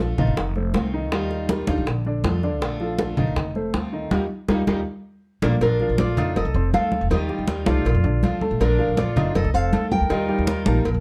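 Cuban son in a guajira vein, this sunny, relaxed passage from a longer piece moves in a straight four over a repeating cycle of F7, Ebadd9 and Bbmaj7 chords. A woody, thumpy pizzicato upright bass with gut strings sits up front, while a picked steel-string acoustic guitar plays accompaniment and a baby grand piano, intimate and natural with audible action noise, spins arpeggios. Ringing, medium-tuned congas, close and dry, join tight, high-tuned bongos and cowbell heard in a small room. A drum fill and a band accent from 4.1 to 5.6 seconds lead into the second section, where a deep, full-bodied fingerpicked nylon-string guitar takes the melody at 5.6 seconds, its finger squeak caught under a plate reverb. An airy, crisp concert flute with expressive vibrato adds a second line, and the whole mix has a dark production with light reverb.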